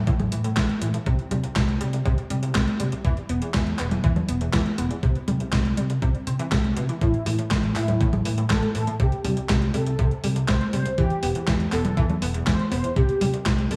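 A straight 4/4 pulse at 121 BPM drives this sunny, romantic italo disco excerpt in C major. A thumpy, overdriven electronic kick and a clean 12-bit drum machine, whose up-front snare, handclaps, hi-hat and congas are overdriven and treated with gated reverb, start at 0.1 s alongside a punchy fingered electric bass shaped by an envelope filter. From 0.0 s an analog pluck spins arpeggios from its bright, round, detuned sawtooth and pulse-wave tone with a noise layer, colored by chorus and digital delay. At 7.0 s a mellow synth brass takes the melody, its dark, evolving tone colored by chorus, phaser, vibrato and tape echo. The chords move through A5, C5 and E5, with a brief break in harmony, all set in a lush hall reverb and small-room ambience.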